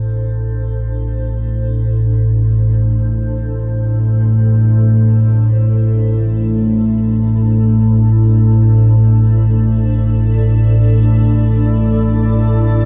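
Floating in free time, this cavernous, unsettling dark ambient drone piece, cut from a longer work, rests on an up-front analog drone whose sawtooth and pulse-wave tones evolve under chorus and pulse-width modulation, while a cloudy, blurred granular pad fades in across the full 12.9 seconds with shimmer reverb, and a very quiet quartz singing bowl rings with a pure, airy tone and slow beating, set inside a dark, wet cathedral space.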